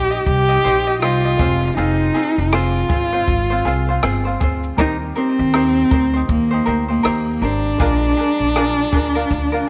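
Light reverb, small-room ambience and a faint mains hum frame this wistful, tender acoustic pop piece at 80 BPM with a swung 16th-note feel, where a dark, close bowed cello with vibrato and tape echo carries the melody up front over a light fingerpicked ukulele, a very quiet clear grand piano with audible action noise, a woody, thumpy pizzicato upright bass on gut strings with transformer saturation, and a dry compact cocktail drum kit of tight kick, rim click and shaker, moving through Cm, Fm, Eb6 and Bb7.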